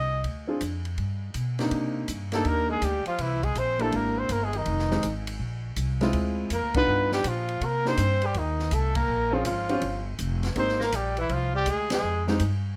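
Swinging at a brisk 163 BPM in 4/4, this relaxed small-group jazz clip in a swing-and-bop vein rides on woody pizzicato upright bass up front and a small-room acoustic drum kit with dark cymbals, a high-tuned snare and a boomy kick, while a natural-sounding baby grand piano comps through minor-seventh and altered-dominant changes. A clear, punchy trumpet with light vibrato and plate reverb carries the melody boldly forward, and from 2.3 seconds a mellow, soft-edged tenor saxophone adds a distant, roomy second line beneath it. The band lands together on accents at 6.7, 8.9 and 11.8 seconds in this short fragment of a longer performance.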